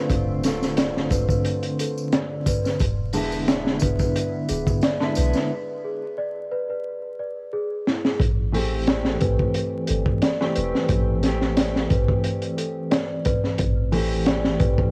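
A crunchy breakbeat kit with a punchy kick and high-tuned snare swings lightly at 89 BPM in this smoky, hypnotic trip hop piece in A minor, where a deep, round 808-style bass sits beneath a dark, clean electric guitar colored by harmonic tremolo and tape echo, a bell-like, slightly out-of-tune celesta plays arpeggios that take on a filter sweep from 8.2 seconds, and a close, dry tambourine stops at 5.5 seconds as a break opens before a drum fill, the whole recording carrying the vinyl crackle and small-room ambience of a home cassette tape.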